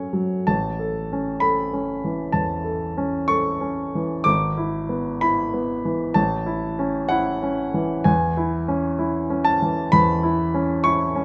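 Bittersweet and stormy, this short, rubato excerpt of a romantic character piece for solo piano sets a warm, polished grand piano up front in a moderately reverberant studio, its present, short-sustained tone ranging from G#1 to D6 as the harmony moves from A through E7/G# back to A before settling on C#m/E at 8.1 s.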